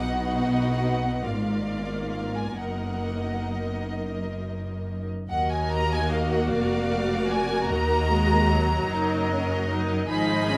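Lush, up-front violins sing a warm, smooth melody with vibrato above a focused second violin line, even violas, rich cellos and expressive double basses, all bowed, in this elegiac, yearning fragment of a slow romantic movement for string orchestra, its rubato 6/8 set in a moderate large-studio reverb.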